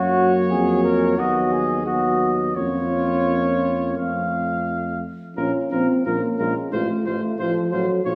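A clear trumpet carries the melody from a slight distance, with a light vibrato and a roomy quality, setting a noble, stately tone for this classical brass quintet excerpt. Beneath it, a mellow flugelhorn sings a second line, while a dark French horn sits in the background as accompaniment. The euphonium sounds present, with a soft attack and light vibrato filling in the middle of the harmony, and a warm tuba anchors the bass from further back, also touched with gentle vibrato. The five players move in a flexible, rubato feel, passing from Gb through Bbm/F and F before the music turns to a new phrase at 5.4 s that settles on Bbm and F/A. A lush concert hall reverb blends with a small room ambience, giving the ensemble a resonant, spacious sound throughout its 8.2 seconds.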